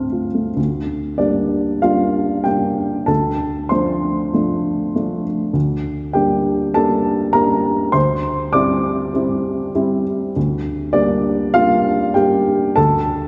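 This is a neoclassical minimalist piano piece, cut from a longer work, with an intimate, melancholic mood at 98 BPM in 4/4. The beats are uneven and the time is handled with rubato. A dark upright piano plays alone throughout, spanning D2 to F6, its woody, mellow tone carrying a vintage character, short sustain and audible action noise. The harmony circles around D, moving from Dm7 to Gm/D at 0.6 seconds, later through Cadd9/D, and settling on a bare D5 at 12.8 seconds. A lush concert hall reverb with a long tail surrounds the instrument, and the listener seems to be placed further back in the room.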